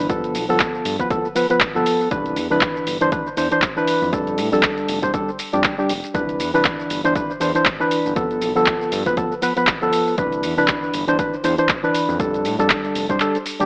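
A hollow, dark organ stab sits up front with chorus, pumping sidechain and analog delay, riding a relaxed, swung deep house groove over a smooth, mellow detuned synth bass, a punchy electronic kick and a drum machine of handclaps, hi-hat and shaker through a G9, Cmaj9 and F69 progression, all captured with a dry, gritty, AM-radio hardware sound and light reverb until the kick drops out at 13.2 seconds near the end of this cut from a longer piece.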